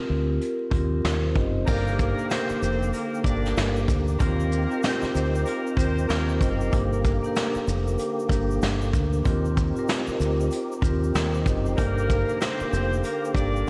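Dark and moody boom-bap hip-hop with a swung feel, cut from a longer piece, where ringing vibraphone with a cassette-tape tint and a round, deep fingered bass open the track, brushed drums with dark cymbals and a tight kick settle in up front, and from 1.7 s a fat, lightly overdriven tonewheel organ with key click and slow rotary swirl, edgy saxophone-section stabs trailing tape echo, and a grainy tube shaker tucked in the background join, all bathed in a dreamy hall reverb with vinyl crackle.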